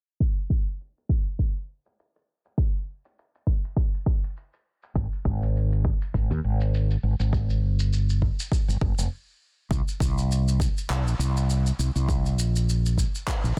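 A deep, tape-softened electronic kick drum sits up front in this meditative, earthy organic downtempo cut at 101 BPM with a light 16th-note swing, alongside a layered shaker and handclaps with a small-room character, while a dark, round, punchy fretless electric bass with sidechain pumping enters at 5.0 seconds; a filter sweep runs through the opening before a brief stop at 9.1 seconds, all within a dry, dense, heavily limited mix.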